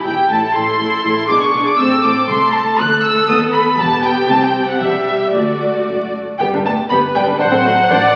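An up-front violin section carries the melody high in its range with smooth, even vibrato, while an intimate second violin line played sul tasto and a focused, lush viola accompaniment sit alongside it. This brief, cheerful classical-period fragment for string orchestra moves at 120 BPM in 2/4 with a rubato feel in G major, passing through chords such as Am, D, Em and C before reaching G at 6.4 seconds. An expressive cello section in the background and a clear, distant double bass section anchor the low end, all heard through a wet scoring-stage reverb and the crackle of a very old 78 rpm record.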